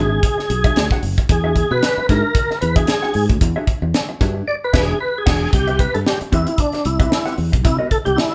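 A lightly overdriven tonewheel organ leads this playful funk excerpt at 113 BPM in E mixolydian, its full tone colored by chorus vibrato and a slow rotary speaker as it solos over an E9 groove with a gently swung sixteenth feel until 5.5 seconds. Beneath it sit a punchy fingered electric bass, a dark, clean and compressed electric guitar, and an airy, polished fusion drum kit with a high-tuned snare, tight kick, hi-hat and crash; the band hits an accent from 4.5 seconds before the harmony shifts to Cmaj7. The group plays live in one large studio room with moderate reverb, and the drums and organ sit up front.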